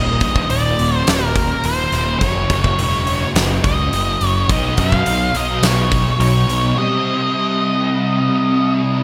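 This wistful, hazy excerpt of shoegaze-leaning dream pop rock opens with a thick, double-tracked fuzz guitar riff and a dark octave-fuzz lead melody sounding together, both picked and placed up front. The rhythm guitar carries an ensemble chorus over its distortion, while the lead's fuzz trails through a digital delay. A fuzz-laden picked electric bass with an overdriven, direct-and-amped character anchors the low end, and a huge arena drum kit with a fat snare and punchy kick comes in at 0.2 seconds with hi-hat, kick and snare. The harmony moves from Eb5 to Gb5, then to Bsus2 and Cm, all bathed in a wet recital hall reverb. The drums and bass drop out around 6.6 to 6.7 seconds, leaving the two guitars to ring on, the lead ending at 8.7 seconds and the riff carrying through to the cut at 9.0 seconds.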